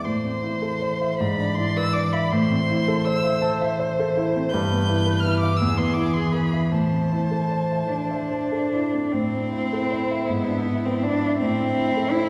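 Classical chamber music for piano quartet, this slow, yearning and elegiac romantic movement moves in a rubato 6/8, and this short cut from a longer piece shifts into a new section at 9.1 seconds. A rich, expressive violin carries the high melody with vibrato and portamento, while a smooth, even cello and a warm, focused second violin weave supporting lines beneath it. A dark, mellow grand piano with short sustain sits up front in the accompaniment, and a wet concert hall reverb places the listener further back in the room.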